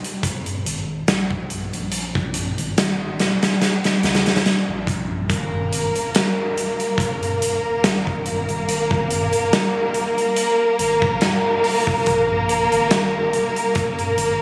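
A huge, punchy arena drum kit opens this hypnotic, melancholic trip hop piece at a lightly swung 71 BPM, joined at 0.7 seconds by a round, deep analog bass, before a veiled, con sordino chamber violin section arrives at 5.3 seconds with bowed, vibrato-laden sustained chords on G#sus2, all heard through a phone-in-the-room recording with vinyl crackle, compression and light studio reverb.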